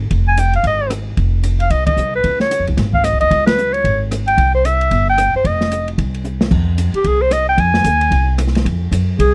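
An upright bass opens this brisk small-group swing and bop excerpt in F minor at 225 BPM, its woody pizzicato tone sitting up front, joined almost at once by an open jazz kit with dark cymbals and a boomy kick, then a breathy clarinet melody from 0.3 seconds. The clarinet leads with subtone, vibrato and scooped notes, close and clear over a cool, late-night swing feel, with band accents at 1.8 and 3.4 seconds and a drum fill at 6.2 seconds before the tune returns to its opening section. The sound is dry and intimate, a close 1970s-style studio recording in a small room, cut from a longer piece.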